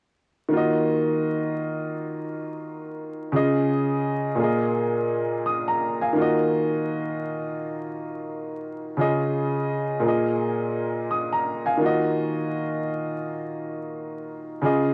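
A swung 4/4 hip hop groove at 85 BPM frames this dark, tough passage in Eb minor, cut from a longer piece. An upright piano plays alone from 0.5 to 14.9 seconds, woody and natural with long sustain and sitting up front, cycling through Ebmadd9, Dbadd9 and Bb7sus4 chords. Cassette tape coloring and high-pass and low-pass filtering on the piano, a light reverb and a bed of vinyl crackle give it a lo-fi, home-recorded feel.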